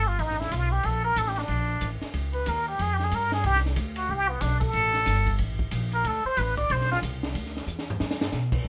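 Small-group swing and bop jazz with a sophisticated, swinging mood, cut from a longer piece and recorded dry. A bright, breathy trumpet with a plunger mute carries the melody up front with a wah-wah tone and light vibrato until 7.0 seconds, over woody pizzicato upright bass that sits just as forward. An acoustic drum kit with dark cymbals, a high-tuned snare and a boomy kick plays in a small room and adds a fill at 7.7 seconds.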